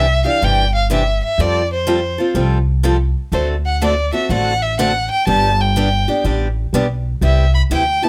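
Playful and lively, this short cut from a longer piece of acoustic string swing in the jazz manouche style moves at 124 BPM in 4/4, with a swung eighth-note feel in C major. A single bowed violin carries the melody throughout, its tone rich and focused with vibrato and a smooth top, sitting between C5 and B5. Beneath it, a picked steel-string parlour guitar supplies the accompaniment with a bright, boxy sound from fresh strings, while a pizzicato upright bass on gut strings gives a dark, woody, thumpy foundation. All three parts play together for the full 8.1 seconds, each placed up front. The harmony moves from Cadd9 to Fadd9, then D7 and G before settling on Cmaj7 at 7.2 seconds. Close, detailed microphones and a light reverb keep the small ensemble intimate and clear.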